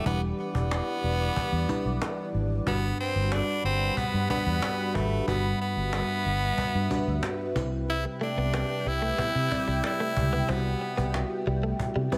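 A straight 4/4 pulse at 92 BPM, set by woody cajon and a dark, foam-muted fingered electric bass, drives this dramatic, urgent 1980s-style pop excerpt, where a raspy, gritty tenor saxophone with vibrato and digital delay carries the melody up front over a lush, detuned FM electric piano with chorus and phaser, a sweeping resonant sawtooth pad in the background, and a clean, direct-recorded electric guitar riff entering at 8.1 seconds, all moving through Em7, Gmaj7 and Cmaj7 in light digital ambience.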